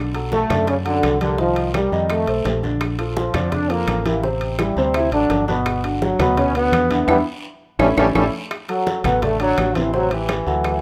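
A warm, tight trombone section carries the melody up front with vibrato, backed by a polished grand piano with long sustain and a dark, round, punchy fretless electric bass in this joyful, sunny salsa excerpt at 168 BPM in D major. Bright congas, ringing metal-shell timbales and woody claves sit in the background, joined by a raspy, saturated guiro and very quiet high-tuned bongos, all under light reverb. A drum fill and band accent from 7.1 to 8.5 seconds lead into a new section.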